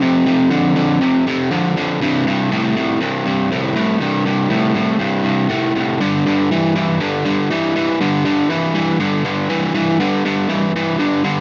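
A crunchy, overdriven electric guitar plays alone from the start, picked and double-tracked, sitting bright and up front in the low register as it moves through F5, C5 at 2.0 seconds and G5 at 6.0 seconds. This is a driving, sunny rock passage cut from a longer piece, at 120 BPM in a straight 4/4 in C major, tuned a touch below standard pitch. The dry, close sound recalls a 1970s studio, with little reverb around the guitar across its 11.4 seconds.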